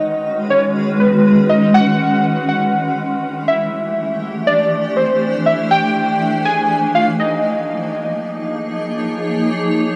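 A dark, warm haze of huge ambient reverb surrounds this short, eerie IDM excerpt, cut from a longer piece and moving in a straight 4/4. A granular cloud pad sits up front from start to finish, holding sustained chords that feel blurred and evolving, its slow attack and long release letting each harmony smear into the next through its own built-in reverb. Over it, warbly lo-fi synth keys carry the melody in a fairly high register, their detuned, ring-modulated tone colored by chorus and tape echo, with a filter sweep and a nostalgic, mellow character. The keys speak with a fast attack and decaying notes, giving a glitchy edge against the pad's cloudy sustain. The harmony drifts from Abm7 to C and then to Db69/F, lending the passage an uneasy, dreamlike pull.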